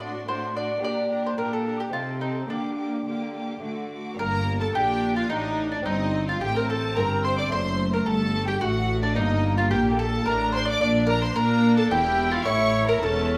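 In a straight 3/4 at 109 BPM, this driving, dramatic baroque-style concerto movement in G minor, cut from a longer piece, puts an up-front, woody picked mandolin on the melody beside a lush violin section with vibrato and portamento an octave higher, while a smooth background violin section carries a second line, a delicate fingerpicked gut-string lute and a focused viola section fill the accompaniment, a close cello section anchors the bass, and a rich chamber double bass section joins it at 4.2 s, all set in a stone room with a wet reverb as the harmony moves through D7/A, Gm and an Em7b5 to A.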